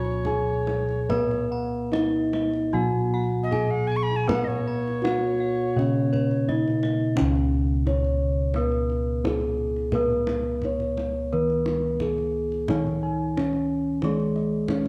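A serene, shimmering passage of Javanese gamelan in Db slendro at 71-93 BPM opens with a mellow, padded bronze metallophone melody over a lower metallophone accompaniment, round, beating bossed-gong bass and arpeggios, tight hard-handed kendang and a breathy, reedy alto recorder second line with vibrato that stops at 6.6 s, while a horn-mallet metallophone adds ringing arpeggios from 1.1 s and the gong arpeggios return at 12.7 s, set in a dark production with moderate hall reverb.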